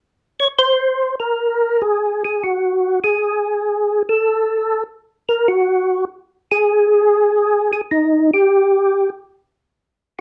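Closely miked with light reverb, this soulful, swinging jazz fragment features a solo percussive tonewheel organ, mellow and round with a dark, clean third-harmonic percussion bite, chorus vibrato and a slow rotary speaker, sitting up front from 0.4 to 9.1 seconds.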